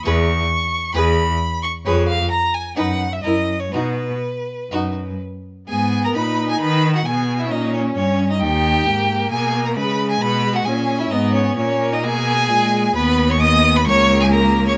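The first violin leads up front with a smooth, vibrato-laden melody reaching from B4 up to D#6, its tone rich and even across this spirited, graceful fragment of a quick classical-period movement for string quartet. Set at 132 BPM in 4/4 with a rubato feel, the music opens in B major before turning to G# minor at 5.7 s, passing through chords such as C#m7/E, Fdim and F#7 before settling on G#m, D#7 and a closing A#m/C#. The cello, also up front, anchors the bass with a focused sound and smooth top between C#2 and D#3. Set further back, the second violin carries an even second line, while the viola fills in the accompaniment with soft attacks, expressive portamento and vibrato. Light reverb gives the four bowed voices a gentle sense of space through to about 14.8 s.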